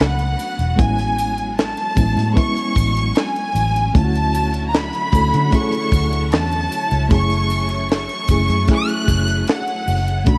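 A rich, up-front studio violin section carries the melody high above this lush, romantic 1970s-style soul groove at 76 BPM in 4/4, tuned slightly flat to A4 = 437 Hz, moving through Bm9, Amaj7, Dmaj9 and F#m9. Beneath it, a reedy, worn electric piano with fast tremolo plays the accompaniment, and a shimmering, warbling string machine holds slow-attack sustained chords with ensemble chorus. A round, foam-muted electric bass and a tight, dry funk kit with a high-tuned snare anchor the groove, a close triangle enters in the background at 0.2 s, and moderate spring reverb colours this short passage cut from a longer piece.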